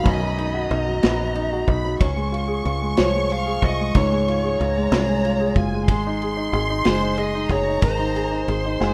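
A rough home-demo mix with a moderate studio reverb opens this tender, romantic six-eight pop ballad in Db major, moving at 62 BPM through Cb, Dbmaj7 and Abadd9. A dark, distorted, picked lead guitar carries the melody over a polished, up-front grand piano and a punchy, foam-muted fingered bass, while a distant, lush violin section bows a soft-attacked second line with expressive vibrato. From 0.1 s a small-room acoustic kit adds a tight kick, a medium-tuned snare and a smooth ride with a rolled-off top, in a short fragment cut from a longer piece.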